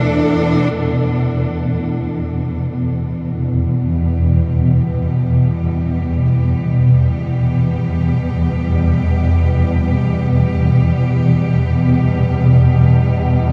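In free time, this dark, ominous ambient drone excerpt in E minor, tuned to A4 = 445 Hz, is carried by an up-front swarming, detuned, granular drone in the low register, while a quartz singing bowl rings very quietly and brightly for the first 0.8 seconds and a clear, smooth bowed cello section fades in from 0.7 seconds with vibrato on sustained chords, the whole mix steeped in a huge, wet ambient reverb.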